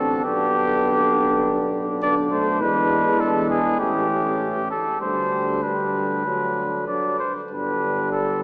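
The trumpet leads up front, carrying the melody between G4 and D5 with a warm, classical tone in this triumphant, noble brass quintet passage in G major, taken from a longer piece. Beneath it the flugelhorn sings a soft-edged second line, while a mellow French horn, set distant and roomy with light vibrato, and a euphonium sitting in the background fill out the accompaniment. The tuba anchors the bass from G1 to E2 with a smooth top and its own light vibrato. At 99 BPM in 4/4, the playing moves with a rubato feel through a chord sequence running from G/B through E7, A7, G/D and D before settling on G at 7.5 seconds. All five players sound together for the full 8.4 seconds, bathed in a wet cathedral reverb with a 6.1-second decay, heard through a small-speaker sound and tuned to A4 = 435 Hz.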